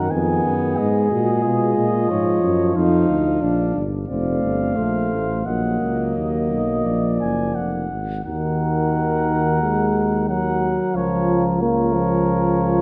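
A dark, hall-reverberant sound frames this solemn, grave passage for brass quintet, cut from a longer classical piece in E-flat minor at 89 BPM with uneven beats and a rubato feel. A mellow trumpet carries the melody with light vibrato and a smooth top, above a close-miked flugelhorn second line, also touched with vibrato, while French horn with a vintage colour and a mellow, smooth-topped euphonium fill the accompaniment. A warm bass trombone sits up front as the bass, and the harmony moves into a new section at 8.2 seconds.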